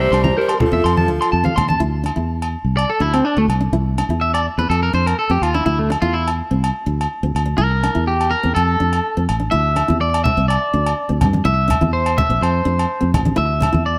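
A twangy, slightly broken-up electric guitar with slapback echo spins arpeggios up front through this warm, danceable highlife guitar band excerpt in straight 4/4, while a dark, tremolo-tinged electric guitar melody and a raspy tenor saxophone second line in the background are heard only in the opening moments before a clean electric guitar solo takes over from 1.8 seconds, all over a fingerpicked nylon-string guitar with finger squeak in the background, a round fingered electric bass, ringing agogo bells, and soft-handed, low-tuned congas that return at 9.9 seconds, with light reverb and a faint mains hum.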